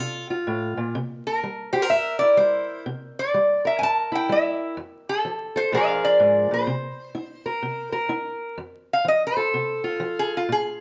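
Acoustic country blues with a laid-back, soulful swing, where a metallic, nasal lap resonator guitar sings the slide melody up front over a dark, woody fingerpicked parlour acoustic with old strings, moving through F, C7 and Bb7 before the resonator takes a steel-bar solo from 8.6 seconds, all in a moderate studio reverb dusted with vinyl crackle in this short excerpt cut from a longer piece.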